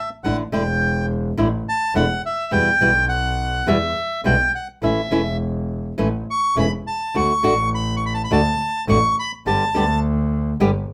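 The bandoneon carries the melody up front, its reedy, dark and airy voice singing high in the register from the start and falling silent at 10.0 seconds. This short cut from a longer tango moves at 104 BPM in 4/4 with a rubato feel, its mood elegant and nostalgic. A fingerpicked flamenco guitar supplies the accompaniment with an acoustic, warm tone, its finger squeaks audible close to the listener. Beneath them a single bowed double bass anchors the low end, clear and intense with a light vibrato and a smooth top. The harmony moves through Asus4, Em, A and D before settling on Gadd9, all set in a moderate club reverb that gives the trio an intimate, lived-in space.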